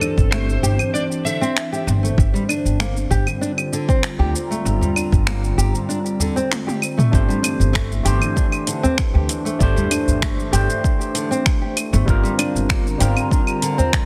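A woody upright bass anchors this meditative, hypnotic organic downtempo excerpt alongside an overdriven electronic kick and deep house kit with metallic hats, dark fingerpicked nylon-string arpeggios, a warbling lo-fi pad with sidechain pumping, a brief slide guitar line that stops at 1.8 seconds, a deep udu in the background, and a barky, gritty tine electric piano entering at 7.1 seconds after a drum fill, all in a dense, heavily limited mix.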